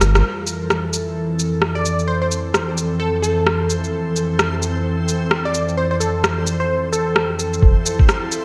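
A ghostly, melancholic future garage excerpt at 130 BPM with swung sixteenths opens on a drum fill of overdriven electronic rim clicks and shaker, a brief round sine sub bass hit and an airy, breathy pad holding Fmaj7 with chorus and sidechain pumping, while a reversed, granular, dreamy texture drifts in the background from 0.2 s. From 1.8 s a punchy, catchy unison sawtooth lead with vibrato and delay carries a mellow melody, and at 7.6 s a muffled, thumpy, pitched-down kick lands up front as the sub bass returns. The parts sit in a lush hall reverb with bright 1980s-style digital production.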